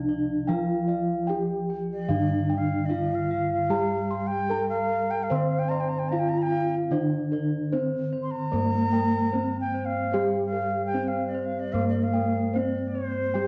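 This shimmering, serene gamelan passage opens with several bronze parts together. A bronze metallophone carries the melody with padded disc mallets, its mellow ringing tone set in a boxy small room, and its paired tuning produces shimmering beats. Beneath it, a second metallophone struck with a wooden mallet plays a low accompaniment. High arpeggios come from bossed gongs with a round, airy sound, joined by another wooden-mallet metallophone. Soft bossed gongs, played with padded beaters, supply a beating bass line that sits in the background. At 1.9 s a bright, end-blown bamboo xiao enters up front with a second line in a straight, tongued, expressive tone, and a wet spring reverb gives the whole piece a sense of space until this cut from a longer work breaks off at 13.5 s.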